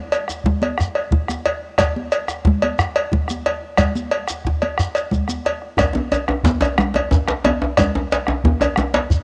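A metallic, saturated cowbell sits up front in this festive, powerful West African drum ensemble in 12/8, opening together with a grainy, mellow shekere. They are joined almost at once by a round bombo and a medium-tuned djembe set back in the background, while high-tuned congas with a bright, thin, damped skin are played close and dry with soft hands. At 5.8 s a second djembe enters, deep and compressed, pushed up front for the closing stretch. The cassette home recording has a small-room ambience and light reverb, and the passage is cut from a longer piece.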